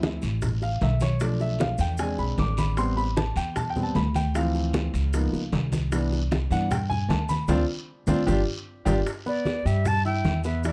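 Afro-Cuban jazz at a lively 153 BPM in straight 4/4, this sunny passage is cut from a longer piece and captured in a dry, close 1970s-style studio sound. A clear, up-front concert grand piano with deep bass and short sustain carries a solo through the first 9.1 seconds, moving through chords such as Dm9, E7b13, Am9, Db13 and Cmaj7. Beneath it, a woody, thumpy pizzicato upright bass on gut strings sits prominently, while low-tuned congas with a thin, bright skin and round, soft-handed vintage bongos drive the groove, joined by a raspy guiro and grainy, mellow maracas set far back in a large room. Around 7.5 seconds the band hits an accent, and from 7.9 seconds a drum fill leads into a new section at 9.1 seconds, landing on Em7. At 9.3 seconds a breathy, bright concert flute enters up front with a tongued, straight, slightly unsteady tone.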